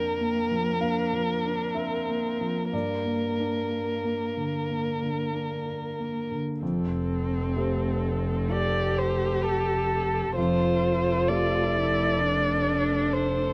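Neoclassical piano and strings in F major, an intimate, tender excerpt moving at 61-66 BPM in a rubato 4/4. A single muted violin sings the melody close and up front with veiled vibrato, over a dark cello second line and a grand piano accompaniment whose long sustain and audible action noise sound natural, as the harmony shifts from Bb/F to Gm. At 6.6 s a muted viola joins in the background and an up-front double bass adds bowed portamento as the phrase repeats over Fadd9, all captured dry and detailed by close microphones.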